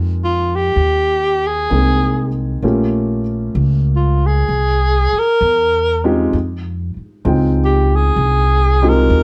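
Intimate and melancholic, this excerpt of a swung jazz ballad features a breathy alto saxophone solo entering at 0.2 seconds with vibrato, soft attacks and scooped notes over a warm grand piano whose action noise is audible and a woody, thumpy pizzicato upright bass on gut strings, all up front in light reverb as the harmony moves from Ab69 through Gm7b5 and C7alt to Fm9.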